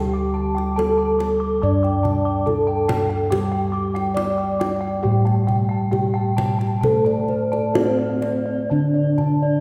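In a straight 4/4 pulse, this serene, shimmering gamelan passage, cut from a longer piece, layers a bronze metallophone melody over a ringing metallophone accompaniment, with bossed gongs and another metallophone sharing high arpeggios and round, soft bossed gongs anchoring the bass, while a tight kendang played with hard hands enters at 0.6 seconds, the whole ensemble heard from further back in a reverberant concert hall.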